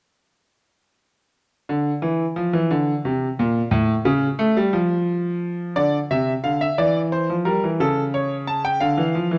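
A bright, vintage-toned grand piano plays alone from 1.7 s in this serious, contemplative baroque-style classical two-part invention in D minor, moving at 59 BPM in a straight 6/8 with long sustain and sitting up front under close, detailed microphones in a moderate recital-hall reverb, its harmony turning at 5.8 s to D minor and passing through Em7b5 and A/C# before coming back to D minor in this short cut from a longer piece.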